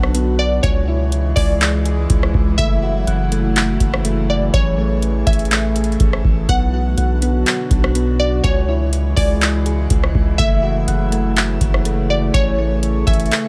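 Opening at once with a booming analog drum machine of deep kick, metallic hi-hat, handclaps and rim click over a long, sine-toned 808-style bass up front, this melancholic, hazy atmospheric cloud-rap hip hop excerpt at 123 BPM in half-time B dorian layers a warbling, nostalgic tape-like pad with phaser, reverb and sidechain pumping, soft vintage electric-piano-like synth keys playing arpeggios through tape echo, and a glassy, crystalline wavetable pluck melody with a filter sweep, drifting through Bm, C#m, F#m7 and Amaj7 in a digital ambience until the kick falls silent at 13.3 seconds.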